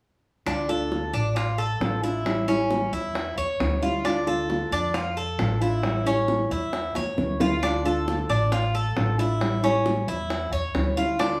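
A bright, metallic Cuban tres with doubled strings sits up front picking arpeggios over a fingerpicked classical nylon-string guitar with audible finger squeak, a dark, growly pizzicato upright bass and round, low-tuned bongos struck with hard hands, in this sultry Cuban son and guajira passage cut from a longer piece at 134 BPM in D harmonic minor, alternating between Dm and A7 in a small live room, with a drum fill at 7.0 seconds.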